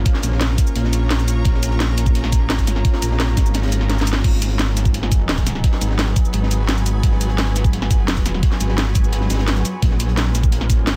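A metallic wobble bass, saturated and up front, opens this dark, mechanical drum and bass excerpt, with an eerie, nasal inharmonic drone and a bright, blurred granular cloud pad sitting in the background, all pumping against the sidechain. A knocking electronic kick, a drum and bass kit with a cracking snare, metallic hats, cabasa and crash, and a very quiet, gritty breakbeat kit with a high-tuned snare drive the straight, futuristic groove. The kick drops out at 3.5 seconds, a drum fill arrives at 3.9 seconds, and the harmony moves from A#m to G#m7 at 4.2 seconds, all within a dense, heavily limited digital mix.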